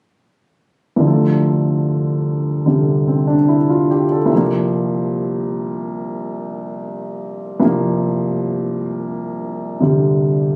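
Captured on a phone in the room, this short cut from a longer solo jazz piece carries a light club reverb and compression. A woody, intimate upright piano sits up front from 1.0 to 10.6 s, its action noise audible and its long sustain lending a vintage, smooth glow as it ranges from C2 to A4. At 73 BPM in 4/4 with a swung eighth-note feel in F major, the harmony moves from F69/C to C7sus4 at 4.3 s, giving the passage a swinging, warm mood.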